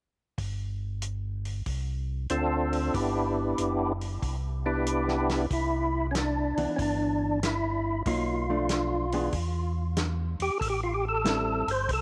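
Soul jazz organ trio in C major at 94 BPM, swinging in 4/4 with a bluesy, greasy mood, heard as a short cut from a longer piece. From 0.4 seconds a mellow tonewheel organ carries the bass line, round and dark through chorus vibrato and a slow rotary speaker, while a dry soul drum kit with a fat snare, tight kick and hi-hat keeps time with a rolled-off top. At 2.3 seconds a second tonewheel organ takes the melody, fat and lightly overdriven, with third-harmonic percussion, audible key click, chorus vibrato, slow rotary and tape echo, sitting up front as the loudest part. A hollow-body jazz guitar adds dark, clean, fingered and compressed accompaniment from 6.6 seconds as the harmony moves from Cmaj9 through Bm7b5 and Em to Am7. Light reverb gives the trio a modest sense of room.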